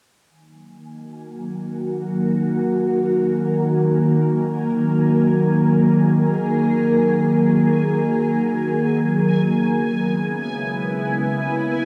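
Expansive and cosmic, this excerpt of sequencer-driven ambient space music drifts in free time in E-flat Phrygian, tuned to A4 = 439 Hz, with a bubbling, resonant stepped-filter texture fading in from 0.9 seconds and a morphing, detuned wavetable pad entering up front at 1.4 seconds with sustained chords. The pad's ring-modulated tone is colored by ensemble chorus and phaser as a filter sweep moves through it, while the mellow, sawtooth-based texture sits far lower in the mix with its own chorus and random filter steps. The harmony moves from E-flat minor to D-flat minor seventh at 9.4 seconds, all bathed in a huge, long-tailed reverb with the soft grain of cassette tape.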